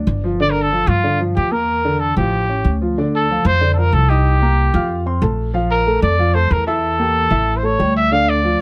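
Afro-Cuban jazz in G minor at a fiery yet sultry 187 BPM, this short cut from a longer piece sets a woody, thumpy pizzicato upright bass up front under natural-sounding grand piano chords, while a vintage-toned solo trumpet with light vibrato and scooped notes enters at 0.4 seconds to carry the melody, all captured with close, detailed microphones and light reverb.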